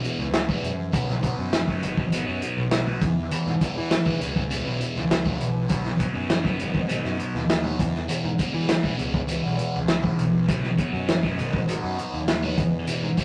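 Trippy and kaleidoscopic, this psychedelic rock excerpt in E major rolls at 100 BPM in a straight 4/4 over chords alternating between E and B, with a bright, double-tracked fuzz guitar riff up front through distortion and phaser, a round, overdriven picked bass underneath, a muffled, lo-fi vintage drum kit with tight kick, snare and hi-hat, and a very quiet, silky string machine warbling sustained chords in the background, the whole mix bathed in wet reverb and the rough, tube-saturated grit of a rehearsal room.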